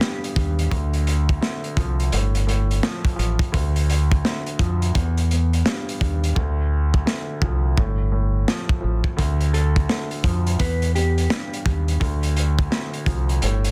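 A crunchy, saturated breakbeat kit with a tight kick and a rolled-off top opens this dark, moody boom-bap hip-hop excerpt alongside a low, intimate grand piano whose action noise is audible, and a round, deep fingered electric bass joins at 0.4 seconds, sitting up front. The hi-hats drop out from 6.4 to 9.2 seconds, and a clean, mellow electric guitar with subtle chorus and digital delay adds a brief melodic line from 9.5 to 11.5 seconds over the minor-leaning chords. The dry, dense, heavily limited master keeps the swung groove close and heavy.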